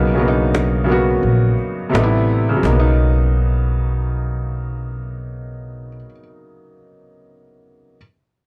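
Lo-fi hip hop with a cosy, nostalgic mood, built on an up-front, mellow felt-muted upright piano with audible action noise under a low-pass filter, a growly pizzicato upright bass, a woody cajon with faint snares that drops out at 2.9 seconds, and a dark, very quiet fingerpicked flamenco guitar melody, in a dry, gritty recording with cassette tape and transformer saturation.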